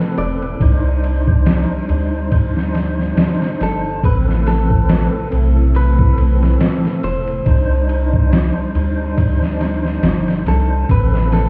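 Heard muffled as if through a wall, with club ambience, vinyl crackle and little reverb, this cinematic, hypnotic trip hop excerpt at 70 BPM with a light 16th-note swing sets a clean, picked electric guitar melody with tape echo over a slow-rotary tonewheel organ with key click, tremolo and 12-bit sampler grit, mellow sawtooth string-machine cellos with ensemble chorus in the background, and, from 0.2 seconds, an up-front round dub sub bass with tube saturation and a pitched-down, compressed sampler kit of thumpy kick, snare and ride, over chords shifting between Amadd9 and Cmadd9.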